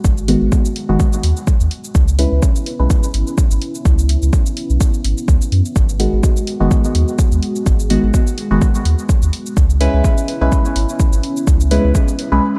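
An overdriven electronic kick drum sits up front in this meditative dub techno fragment, its deep, layered thump re-recorded in a large room and carrying a lightly swung 4/4 groove. Beneath it, a pure sine sub bass holds smooth, sustained low notes that pump with the sidechain. A dark analog pad of detuned sawtooth and triangle tones, with a sub octave and slow attack, breathes through chorus across the whole passage, alternating between G#m7 and C#m7. The deep, mellow chord stab is the other featured voice, soft and filter-swept with a fast attack and a decaying tail, smeared by chorus, phaser and dub echo. It drops out at 3.0 seconds and returns at 6.0 seconds. Tape-warm electronic shaker and hi-hat tick quietly in the background, while light digital reverb gives the dark, warm production its dim, enveloping space.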